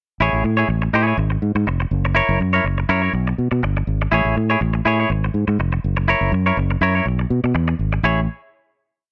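Danceable and glamorous, this short, complete disco piece moves at 122 BPM in a straight 4/4 and sits in A major. A clean electric guitar plays choppy sixteenth-note accompaniment from 0.2 to 8.2 seconds, its bright, twangy, compressed tone placed up front. Beneath it, a fingered electric bass carries an octave disco line with chromatic approach notes, its dark, round sound direct and amped, also up front. The verse cycles through Amaj7, G#7, F#7 and Bm7, then turns through Bm and E7 before resolving on a final Amaj7 chord at 8.0 seconds. A digital ambience adds a sleek sheen to the room sound.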